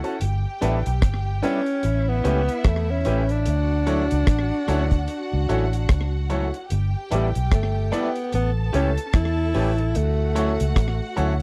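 Lovers rock reggae in D major at 74 BPM, tender and smooth, with a swung sixteenth feel; this short excerpt cycles through G6, A7 and Dmaj7 chords. A dark, dry reggae drum kit with a tight kick, hi-hat and rim click, carrying a slapback echo, sits up front beside a round, foam-muted fingered bass that enters at 0.2 seconds, while a bright, twangy electric guitar through a small old amp plays chorused stabs in the background and a natural grand piano adds accompaniment. An alto saxophone with jazz-style vibrato and tape echo carries the melody up front from 1.4 seconds, over a bowed, sul tasto string section playing an intimate second line, all in a close, 1970s-style studio sound with little reverb and faint mains hum.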